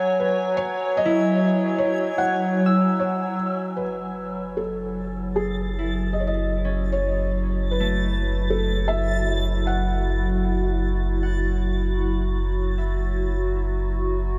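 This serene, spacious ambient excerpt opens with a soft, felt-muted upright piano carrying the melody through tape echo, over a warbly, nostalgic tape-like pad of detuned sustained chords with chorus and phaser, and a reversed, dreamy swelling texture floating high above. A fingerpicked concert harp enters with ringing arpeggios at 1.1 seconds, and at 3.8 seconds a round, deep sub bass arrives up front as the harmony moves from F#sus2 to F#m7, while the harp and the swelling texture begin to fade out. The piano stops at 10.0 seconds, leaving the pad, harp, texture and bass to drift in a huge, wet reverb.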